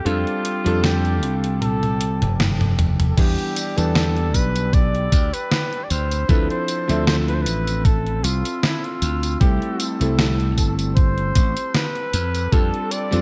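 Hazy and woozy, this lightly swung 77 BPM vaporwave excerpt sets a vibrato-rich, punchy flugelhorn melody with tape echo over a clangy vintage electric grand piano drenched in lush chorus and echo, a warbling, nostalgic lo-fi pad glowing in the background, a bright, up-front slap bass and a detuned 8-bit drum machine with gated reverb that plays an opening break and a fill from 1.6 seconds, before a thumpy electronic kick enters at 3.2 seconds as the chords drift through F69, Em7, Dm9 and C6.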